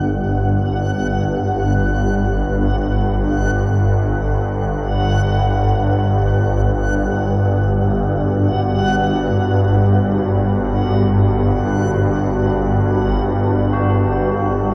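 Dark ambient drone in free time and G major, desolate and dark, where an up-front swarming drone, tense and granular, churns low from the start beside a faint reversed, swelling texture high above, a deep, moody pad with chorus enters at 6.8 seconds on sustained chords, and metallic, solemn tubular bells ring out arpeggios at 13.7 seconds, all bathed in a huge, wet reverb and the worn, warbling pitch drift of old cassette tape in this fragment cut from a longer piece.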